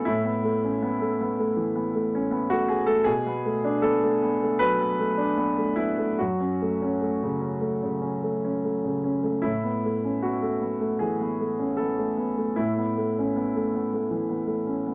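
This is neoclassical minimalist piano in 4/4, played with a rubato feel that gives the short excerpt a gently breathing, unhurried pulse. A solo grand piano carries the whole fragment from 0.0 to 14.9 seconds, its tone warm and natural, placed up front, and kept within a range from F#2 to B4. A moderate small-room reverb lends a modest sense of space around the instrument. The harmony moves from Aadd9 to Bm7, then F#m, before returning to Aadd9 at 9.5 seconds. The mood is hopeful and peaceful, and the passage is cut from a longer piece.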